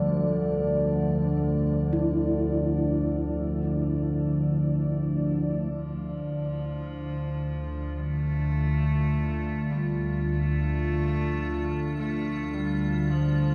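A warbling, detuned analog drone sits up front in this ominous, unsettling dark ambient piece in free time and D minor, beneath a deep, nasal analog pad holding sustained chords, an icy, crystalline glass pad, and soft, ringing arpeggios on a bronze gamelan-type metallophone that stop at 8.7 s, while the pad and a distant, earthy bowed cello melody with light vibrato fade in from 5.7 s, the upper parts trailing shimmer reverb within a vast, echoing cathedral space.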